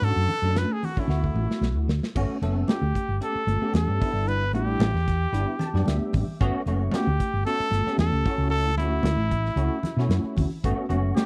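Electric jazz fusion at 113 BPM with a light sixteenth-note swing, bright and soaring, moving through lush chords such as Gmaj9#11 and A9sus4 in this short cut from a longer piece. A clear, close-miked trumpet carries the solo melody with light vibrato over a bell-like, barky tine electric piano with ensemble chorus, which plays a fill at 5.3 seconds, while a round, punchy hollow-body fingered bass sits up front. A modern drum kit with a dark, rolled-off top plays a fill from 1.1 seconds, and ringing, high-tuned vintage congas sit in the background of a dry, close 1970s-style small-room sound.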